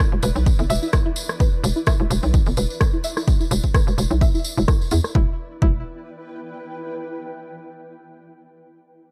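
Cool and quirky, this short minimal techno cut swings lightly in 4/4, with a punchy, tape-warm electronic kick up front and an analog drum machine adding a low-pass-filtered hi-hat alongside a rim click, joined by a jingly, close acoustic tambourine. A hollow, bouncy FM bass knocks beneath a twangy, string-like resonator pluck riff carrying chorus, delay and a filter sweep, while a drum filter sweep also runs until 5.2 seconds. A blurred, evolving granular cloud pad breathes behind them all with its own reverb and sidechain pumping, lingering alone to 7.0 seconds in a dark, dry mix.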